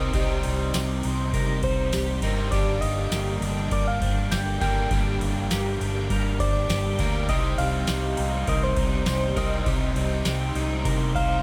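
A booming analog drum machine drives a straight 4/4 pulse with a deep kick, a tonal snare and crash cymbal up front, joined by a jingly tambourine in the background and a dark, round, foam-muted fingered bass. Over this dreamy, hazy shoegaze and dream pop passage, a fuzz guitar and a double-tracked, compressed overdriven guitar with spring reverb play riffs, while a clean guitar with analog chorus and slapback echo picks arpeggios, and a darker crunchy guitar with reverse reverb joins at 7.3 s as the chords return from Gm to Cm. A gentle, keys-like FM synth lead with vibrato, chorus and slapback echo carries the melody above a swirling, bright string machine holding sustained, phased chords in the background.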